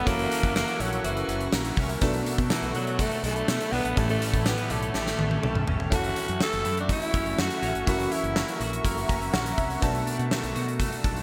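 A bright, glossy 1980s-style digital production in moderate plate reverb frames this romantic pop passage at 123 BPM, where a raspy, gritty alto saxophone carries the melody with vibrato through shimmer reverb and delay until 8.6 seconds, a very quiet, smooth violin section adds a lush second line until 5.7 seconds, a glassy, bell-like FM electric piano with chorus and phaser supplies accompaniment and a fill at 8.8 seconds, an ethereal shimmering pad holds sustained chords in the background, a twangy twelve-string electric guitar picks a clean riff drenched in lush chorus, a round, dark fretless bass anchors the low end, and a punchy, up-front gated drum kit with tambourine and toms drives the groove, rolling into a fill before the chords shift toward F#m7.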